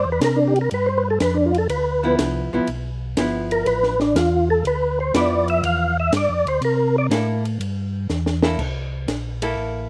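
A greasy, bluesy soul jazz organ trio swings through this excerpt: a percussive tonewheel organ plays the solo up front, with key click, chorus vibrato, a fast rotary speaker and slapback echo, over a round, mellow organ bass line turning through a slow rotary. A compact cocktail kit with a high-tuned snare and punchy kick sits dark and rolled-off underneath, and a clean, picked archtop guitar with its own slapback echo joins at 2.0 s to accompany. A drum fill at 8.1 s closes the solo, and the whole trio sounds dry, with little reverb.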